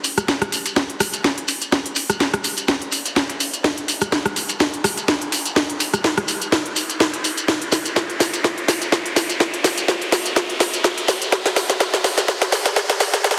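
Swaggering and aggressive, this bass house build-up at 125 BPM in 4/4 carries a 55% swing on the 16ths and stays on one drum fill for its full 13.4 seconds, cut from a longer piece. An up-front garage kit with a cracking snare, crisp hi-hats and rim clicks leads, over a very quiet, gritty sampler-style kit of ride and snare, a tight electronic kick from 0.3 seconds, and a grainy, mellow shekere. A riser enters in the background at 1.7 seconds, and the whole track sits in a lush digital hall reverb with a heavily compressed, radio-like sound.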